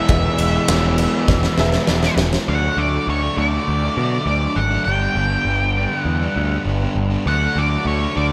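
A big arena sound wrapped in a lush hall reverb frames this driving, swaggering classic rock excerpt, cut from a longer piece. A dark, fuzzy octave-fuzz lead guitar carries the melody up front over a growling, overdriven picked electric bass, while a bright cranked stack guitar with spring reverb and a sludgy distorted guitar churn out riffs in the background, moving through E, D and G chords. In the opening moments a double-tracked crunchy overdriven guitar, a reedy, barky electric piano and a very quiet metallic cowbell play alongside the huge arena drum kit with its punchy kick, fat snare and bright ride cymbal; the drums play a fill from 1.3 seconds and stop at 2.5 seconds, leaving the guitars and bass to carry on.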